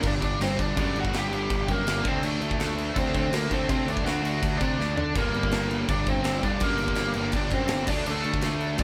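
A band playing live in one room, lightly touched by reverb, tears through this angry, urgent punk rock excerpt in straight 4/4. Up front, a bluesy, warm lead guitar carries the melody over a punchy acoustic kit of kick, snare, toms and crash, while a cranked stack guitar and a compressed, distorted electric guitar play riffs in the background and a growly fuzz bass anchors the low end. The drums break into a fill at 4.8 seconds, and the chords move from G minor to D and back before landing on a D power chord at 7.9 seconds.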